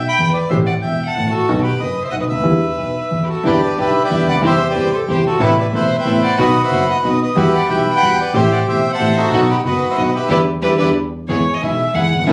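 Tango in E minor at 184 BPM in 3/4, played rubato with a dramatic, tense mood and cut from a longer piece. A reedy, up-front bandoneon carries the melody until 10.9 s, over an expressive bowed violin second line with portamento and vibrato, an intimate concert grand piano with audible action noise and deep bass, and a woody bowed double bass, while a very quiet, focused studio string section adds bowed stabs from 3.4 s. The sound is that of a phone recording in a club, with moderate reverb and vinyl crackle, and after a band accent the violin takes a brief solo at 11.3 s as the harmony lands on an E chord.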